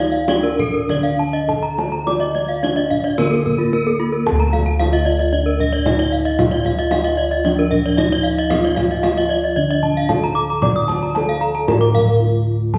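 Cut from a longer Balinese gamelan piece, this brilliant, shimmering passage opens with a mellow bronze metallophone carrying the melody under padded disc mallets and a slapback echo, two bright horn-mallet metallophones spinning close, dry arpeggios whose paired tuning sets off shimmering beats, and round, up-front bossed gongs anchoring the bass, before a tight kendang played with soft hands joins at 0.3 seconds from a distance and adds a drum fill at 12.2 seconds, all within the reverberant glow of a recital hall heard from further back.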